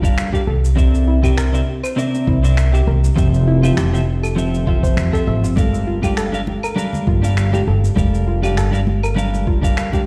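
A woody, dark upright bass sits up front in this smooth sunset chillout excerpt, its pizzicato steel strings giving a thumpy low end from the start until it stops at 9.7 seconds. Beside it, a bright, twangy twelve-string electric guitar plays clean, picked, compressed accompaniment with delay, while a soft, round pluck with chorus and delay traces gentle arpeggios from 0.3 seconds. A gritty, sampler-style electronic kick drum and a quieter bed of electronic shaker, finger snaps and claves carry a 4/4 groove at 100 BPM, swung lightly on the sixteenths. Congas played with hard hands arrive at 5.6 seconds, close and dry in the background. The harmony moves through Gm9, C9 and Fmaj9 before returning to Gm9 in G dorian, tuned to A4 = 436 Hz. The whole plays through a big sound system in a bare room with a large studio reverb, lending a warm, spacious glow.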